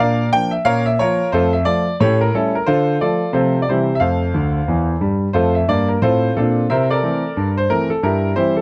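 A clear, up-front concert grand piano carries this exuberant, swinging stride jazz excerpt alone, its open sound anchored by a deep bass, at a brisk 179 BPM in 4/4 with a swung eighth-note feel in F major. The harmony moves from Bb through Bbm, F and A7 to Dm before resolving home, and a piano fill at 4.4 seconds leads into a repeat of the opening section. Later harmonies lean on C13 and C7/G, all framed by a dark production with a modest booth ambience.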